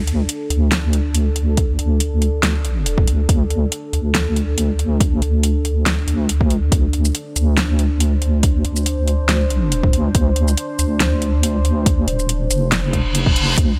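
A half-time 140 BPM groove in 4/4 with a light swing on the 16ths drives this heavy, cavernous deep dubstep excerpt in D minor, built on metallic hats, shaker and a fat snare, with an up-front electronic kick joining at 1.6 seconds. Beneath it, a compressed, up-front wobble bass built from triangle and sine tones rolls through the low register, while a moody sawtooth pad with a sub octave, slow attack, chorus and built-in reverb sustains dark chords overhead. A reverse cymbal rises in at 12.9 seconds, all set in a digital ambience.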